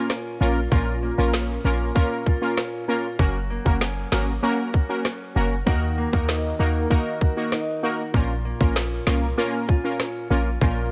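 Bright, detuned synth brass stabs with chorus, a filter sweep and sidechain pumping open this hypnotic, bouncy dancehall piece alongside a boxy, fingerpicked acoustic archtop guitar playing arpeggios, joined almost at once by an electronic island pop drum kit with a tight kick, woody snare and rim clicks, and from 0.4 seconds by a punchy short 808-style bass built from a sine tone with a noise layer, all in a dry mix cut from a longer track.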